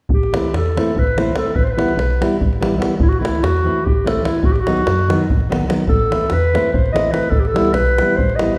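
A dark, distant clarinet carries the melody up front in this fiery, virtuosic Balkan wedding-band fragment, moving in a classical style over a straight 7/8 at 290 BPM in eighths, set in A Dorian with a raised fourth. Beneath it, a thumb-plucked nylon-string guitar adds warm, acoustic accompaniment with audible finger squeak, a woody, soft, round FM bass gives a mellow, fast-attack pulse, and a tight, close and dry davul keeps the percussion up front. A wet recital-hall reverb gives the clarinet a roomy glow as the harmony circles between Am, Em/A and B/A.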